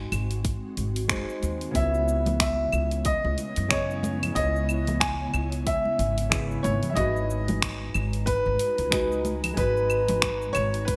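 A bright, 1980s-style digital production sits in a wet plate reverb and small room ambience, framing this wistful sunset chillout excerpt in C# dorian at 92 BPM with a lightly swung 16th feel. A dark, thumb-plucked nylon-string guitar with delay and finger squeak, a woody pizzicato upright bass and a mellow, detuned ethereal pad with ensemble chorus carry the harmony from G#7 to C#m9 and on to G#m7, while a layered deep house kit of dark hats, cabasa, claves and finger snaps sits up front beside a deep electronic kick. A boxy baby grand piano with delay enters at 1.8 seconds to carry the melody, and soft-handed congas play in the background from 2.3 seconds.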